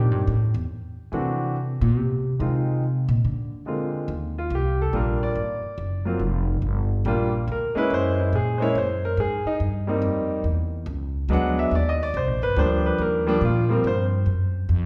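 A church-like hall lends a wet, lingering reverb to this brief swinging jazz waltz fragment, with both instruments sitting up front. A woody, growly pizzicato upright bass takes the opening solo over chords such as D9 and Bb9sus4, while a clear concert grand piano with a deep low end carries the melody from the start. From 4.1 seconds, the piano takes its own solo across a colorful progression moving from Ebmaj7 through Gb9 and E9 to Gbmaj7(no3).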